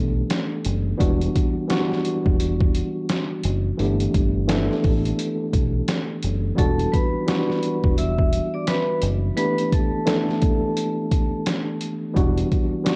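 Moody and reflective, this boom-bap hip-hop excerpt has a swung sixteenth-note feel and the dry, close sound of a home cassette recording. A worn, slightly out-of-tune tine electric piano sits up front, lightly overdriven and filtered as if through built-in speakers, moving between G6/9 and Em9 chords. Under it, a deep dub fingered electric bass gives a dark, round low end. From 0.3 seconds a sampler-style drum kit comes in, compressed, pitched down and gritty, with a thumpy kick, a medium-tuned snare and hi-hat that sound re-recorded in a small room. At 6.6 seconds a hard-mallet vibraphone takes the melody, metallic and ringing with a slow motor vibrato, its bright tone filtered and tape-colored until it drops out at 11.4 seconds.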